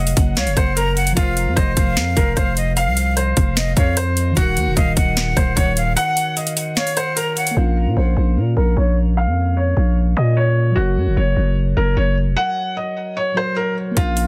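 A felt-muted upright piano carries the melody from the opening moment, its soft, intimate tone edged with audible action noise and softened further by a low-pass filter and tape echo. It arrives over a mellow tine electric piano playing filtered accompaniment through its built-in speakers, and a growling, buzzy 808-style bass that sits up front. This is hard-hitting, menacing trap-flavoured hip hop at 150 BPM in a half-time 4/4 feel, in Bb minor, moving through Gb, Fsus4, Ebm and Bbm before returning to Gb. An electronic trap kit with a hard-clipped kick, sharp snare and metallic hats pushes forward with overdrive, while a breathy, close-miked jazz flute adds a straight-toned second line with tape echo. Both drop out at 7.6 seconds, leaving the pianos and bass under a filter sweep until the drums briefly return at 14.0 seconds. Breaks punctuate each half of this fragment of a longer piece, and the dry, dense, heavily limited modern master keeps the sound tight and close.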